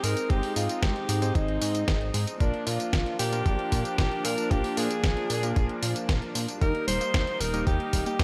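A breathy, intimate alto saxophone carries the melody in this playful, romantic italo disco excerpt, its whispered, vibrato-laced tone floating on tape echo and shimmer reverb. The tempo sits at 114 BPM in a straight 4/4, with chords moving from Ab to Bb at 2.4 seconds and settling on Eb. Behind it, a studio string section holds soft, sul tasto chords while an electric grand piano with a clangy low end adds stabs from the background, both bathed in shimmer reverb. A glossy, chorused synth bass with a mellow pulse-wave character anchors the low end, and a detuned 8-bit drum machine plays hi-hat, snare and tambourine through gated reverb from the start, joined at 0.3 seconds by a gritty, thumpy electronic kick. At 6.6 seconds a very quiet, warbling unison pluck joins with detuned sawtooth arpeggios, and the whole mix carries a light reverb.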